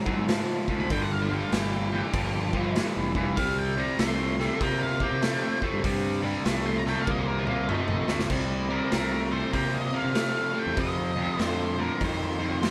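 Gritty and brooding, this excerpt from a longer piece is a swung blues rock and southern rock power-trio groove at 97 BPM in 4/4, set in C minor and tuned to A4 = 444 Hz. A fingered electric bass with a growly, bright fuzz overdrive anchors the low end, while a cranked stack guitar, double-tracked, overdriven and up front, drives the picked riff. The raw garage drum kit sounds saturated and punchy, with a medium-tuned snare, crash, hi-hat and toms in a pumping stone room, its top end rolled off. From 0.8 seconds a dark octave-fuzz lead guitar takes a distorted, picked solo through the digital delay, with a drum fill from 7.1 seconds leading into a new section at 8.3 seconds. The whole band sounds like it is playing live together in one room, with moderate studio reverb, over a progression moving through Ab5, G5, C5 and F5.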